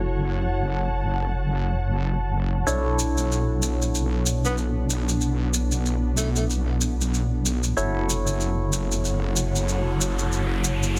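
This swaggering, playful glitch hop excerpt is driven by a heavy, saturated wobble bass that sits up front, its detuned tone thickened with chorus and holding the bottom under chords that move from F#m7 to Bm11 and back to F#m7 at 7.8 seconds. Above it, a barky tine electric piano plays bright, clean stabs colored by phaser, low-pass filter and delay, while an ethereal pad with a slow attack and long release hangs behind everything as a mellow, wave-folded haze bathed in its own reverb. Grainy maracas join at 2.7 seconds, adding a swung, acoustic texture to the groove. A breathy tenor saxophone slips in briefly around 4.5 seconds with a whispered, subtone jazz phrase, its scooped notes trailing into delay. An electronic riser enters at 8.6 seconds and carries through to the cut, all set in light studio ambience with a dense, heavily limited modern finish.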